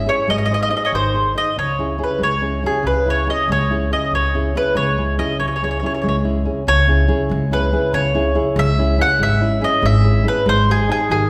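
Passionate and romantic, this brief fragment of an Italian folk serenade sways in 6/8 at 94 BPM in C# minor, with a round, picked mandolin carrying the melody up front in doubled strings over classical fingerpicked nylon-string guitar (its finger squeaks audible) and woody pizzicato upright bass, all bathed in the lush reverb of a recital hall as the harmony moves between G# and C#m.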